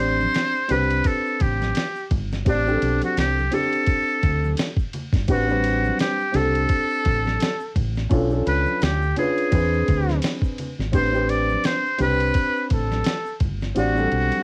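Cool and mellow, this jazz-hop cut at 85 BPM swings lazily in A dorian, its Am11 groove dipping through Bm7b5 and E7b13 before settling back, all under vinyl crackle and a home-cassette haze. A buzzy, breathy trumpet with a metal mute carries the melody up front, whispered and intimate with vibrato and scooped notes, over a dark, woody upright piano and a round, punchy dub bass. A gritty, compressed sampler-style kit with a thumpy kick and fat snare drives the beat, very quiet egg shaker and congas ring softly beneath, and the kick drops out at 13.8 seconds.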